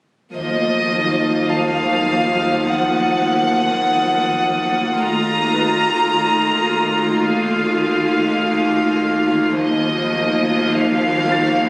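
A slow, straight 4/4 pulse at 52 BPM carries this uneasy, tense cinematic fragment, cut from a longer piece, over an Ebmadd9 chord that moves to F/Eb and settles on Ebsus2. Up front, a rich violin section sings the vibrato melody, with soft-edged sul tasto violas close beside it, while dark cellos and a very quiet double bass section hold a low Eb alongside a string-like sawtooth drone with a noisy edge and its own reverb. High, warm violins shimmer above until 9.0 s, and a very quiet, brilliant grand piano enters at 1.5 s, all caught on a phone in a scoring-stage room with moderate reverb and compression.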